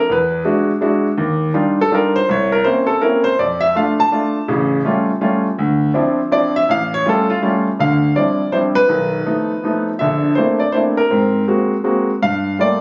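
Cool and swinging, this jazz piece for solo concert grand piano moves at 164 BPM in a lilting 3/4 with a swung feel, set in D minor. The piano sits up front with a smooth, vintage tone and deep bass, working through rich extended chords from E9 at the start to Gm9 near the close, with a change in the section at 7.8 seconds. A moderate club reverb and the casual sound of a phone recording in the room give this 12.8-second excerpt from a longer piece a live, intimate feel.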